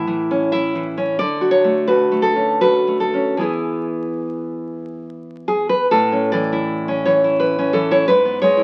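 Tender and warm, this romantic piece for solo classical guitar moves in a flexible rubato triple metre, cut from a longer performance. A single nylon-string guitar carries everything, fingerpicked and sitting up front, with a bright yet full-bodied acoustic tone and a deep classical character that reaches from low bass notes up into a singing upper register. The harmony opens on A, drifts through a softly colored Dmaj7 and settles onto E before a new passage begins at 5.9 s with a return to A. The fragment closes at 8.6 s on a rootless E/G#, leaving the phrase open. A moderate, roomy studio reverb surrounds the guitar, while the crackle of a very old 78 rpm record gives the sound an aged, nostalgic patina.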